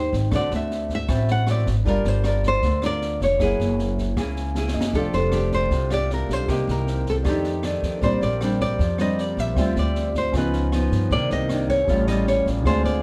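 Bossa nova in C minor at 156 BPM, wistful and melancholic, with a bright fingerpicked nylon-string guitar carrying the melody up front in plate reverb over a second fingerpicked nylon-string guitar's accompaniment, a woody pizzicato upright bass and an open jazz kit with a boomy kick, rim click and high-tuned snare. An intimate grand piano with audible action noise sits in the background and adds a brief fill at 4.4 seconds alongside a drum fill, just before a reedy, breathing pedal harmonium enters at 4.9 seconds with sustained chords. The production is dark with light reverb, and the chords wander from D7 through F69 and Bb69 to close on Aaug7 in this excerpt from a longer piece.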